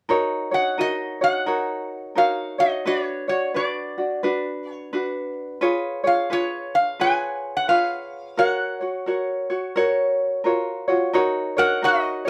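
Relaxed and dreamy, this short Hawaiian excerpt sets a metal-body resonator slide guitar, nasal and metallic under fingerpicks, carrying the melody up front over a light, fingerpicked tenor ukulele in a swung 4/4, with moderate studio reverb and the chords moving from F#6 through Bmadd9, C#7 and F#maj7 before returning to F#6 at 11.1 seconds.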